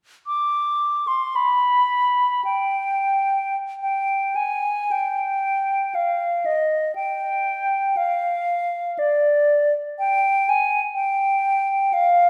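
Bathed in a wet recital-hall reverb with a 1.7-second decay, this meditative, mournful classical fragment for unaccompanied concert flute unfolds in a rubato 3/4 at a free 37 to 63 BPM, tuned to A4 = 439 Hz, the up-front flute singing a pure, straight, tongued tone between D5 and D6 from 0.3 seconds, shifting into a new passage at 3.8 seconds and continuing until the cut at 12.3 seconds.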